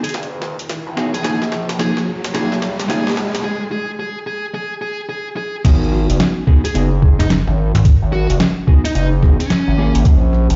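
Booming through a big sound system in a bare stone room, its highs rolled off above 7.6 kHz, this swaggering, playful glitch hop piece at 109 BPM swings in G# dorian as a gritty, sampler-style boom bap kit and an electronic riser open a build-up, while a distorted, picked lead guitar with 12-bit grit and dub echo carries a bluesy melody over a saturated, aggressive synth bass; a dark, clean semi-hollow guitar adds pumping stabs from 1.0 s, a thumpy, up-front kick lands at the drop at 5.6 s, and a snappy, metallic FM slap bass appears at 7.2 s.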